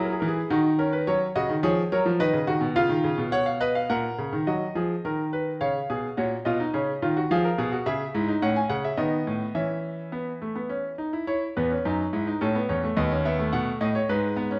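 A clear concert grand piano carries this short baroque-style fugue in three parts alone from 0.0 to 14.6 s, its tone smooth and vintage with a deep bass, short sustain and an up-front presence across a range from D#2 to G#5. The mood is stately and joyful, moving at 106 BPM in a straight 3/4. The harmony begins around F#7, B and C#7, passes through G#m7 and an Fdim chord, then settles into E major from 7.9 s, closing on E, A and B7/D# before a final G#madd11 at 14.1 s. A wet stone room reverb with a 1.3-second decay gives the piano a resonant, stone-walled setting. The passage is taken from a longer piece, ending mid-flow at 14.6 s.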